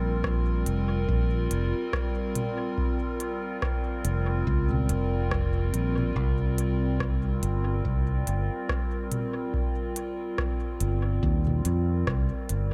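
Deep and hazy, this ambient dub passage moves at an unhurried 71 BPM in 4/4, with a swung sixteenth-note feel and tuning set slightly low at A4 = 439 Hz. A warbly, nostalgic pad holds sustained chords throughout, its detuned, lo-fi tone colored by chorus, phaser and a gritty vintage sampler texture, with slow attacks and long releases. Underneath, a round, up-front fingered electric bass sits low and direct. An analog electronic kick with a deep, tape-warm thump enters at 0.2 seconds. Alongside it comes an organic-sounding electronic kit of crisp hi-hats, rim clicks and toms, its parts trailed by dub echo. The harmony moves from Bbsus2 to C7(no3) at 6.2 seconds, and a cathedral-like reverb soaks the whole dreamy mix in this short section cut from a longer piece.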